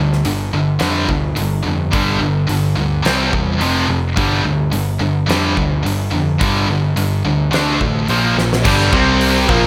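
Swaggering and powerful, this hard rock excerpt at 107 BPM drives crunchy overdriven and heavy high-gain guitar riffs over growly overdriven bass and a huge arena drum kit with a fat snare and punchy kick, moving through power chords from G5 to Bb5 before a drum fill at 8.4 seconds brings in a piping tonewheel organ with slow rotary speaker and a double-tracked distorted guitar in the background at 8.6 seconds.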